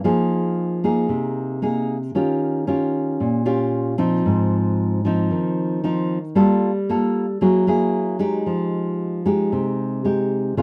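A solo nylon-string guitar opens this intimate, smooth bossa nova in F minor, fingerpicked up front at 114 BPM in a straight 4/4, its fresh strings giving a warm, deep classical tone across a range from Ab2 to A4. The harmony moves from Fm7 through Eb9 and Ab6, then slides from Gm9 at 6.4 seconds to Gb9 at 7.4 seconds before settling on Fm9 at 8.5 seconds. Light reverb sits on a dry, close 1970s-style studio sound in this brief passage cut from a longer piece, which ends at 10.6 seconds.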